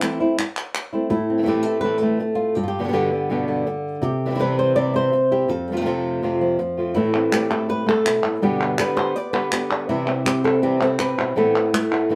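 This excerpt opens with crisp palmas hand claps and a fingerpicked flamenco guitar carrying the melody, the claps dropping out at 0.9 seconds. At 1.1 seconds a second flamenco guitar enters with stabs, its fresh strings giving it a bright, acoustic edge against the lead guitar's warmer tone. Set in A minor at 164 BPM in a straight 4/4, the music feels fiery yet mournful as the chords move from Am through G, C and F before cycling back and closing on Amadd9. The palmas return at 7.1 seconds, sounding close and up front with a small-room character. Both guitars sit up front, and a moderate studio reverb rounds out the performance, which is cut from a longer piece.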